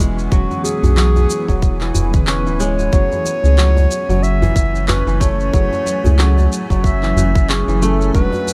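Organic downtempo with a hypnotic, mystical air, this short excerpt moves at an unhurried pace with a gentle swing on the sixteenths, drifting from E13 to F#m7. A round, nasal analog bass carrying sidechain pumping sits up front beside a tight, tape-warm electronic kick that enters at 0.3 seconds. Around them, a fingerpicked kora rings out crisp arpeggios through tape echo, while a djembe with metal rattles sounds from the background of a live room and layered electronic shaker and handclaps add produced texture. A cloudy, evolving granular pad holds bright, blurred chords with its own reverb, and a soft, detuned chord stab in the background brings chorus, phaser, tape echo and a filter sweep. Over this, a mellow clarinet in a classical style takes the solo melody from 0.3 seconds, trailed by digital delay, in an otherwise dry mix.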